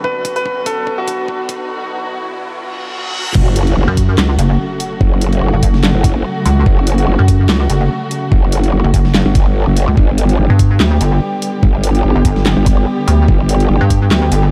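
Heavy wobble dubstep with a chaotic, half-time swing, cut from a longer piece, opening on a brief clear piano melody over dark, woody bowed strings, a knocking overdriven kick, a kit with a huge snare and bright hats, and background risers and a reverse cymbal that build through a filter sweep and break until the drop at 3.4 seconds, when an up-front growling, detuned growl bass slams in over the sidechain-pumped strings, joined about half a second later by a pulsing, distorted pluck wobble bass.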